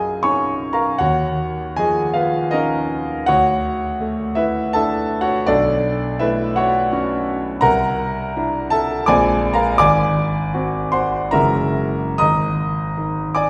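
Classical impressionist solo piano in 3/4, a luminous, dreamy passage played with rubato and cut from a longer piece. A clear grand piano with a smooth, vintage tone and long sustain spans from deep bass to high treble, moving through lush extended chords such as F#6/9, D#m9, Bm9 and Gb9 before settling on an open Ab5 near 12.2 seconds. The piano sits up front in the mix, yet the listener seems placed further back in a concert hall whose wet reverb lets each harmony bloom and linger.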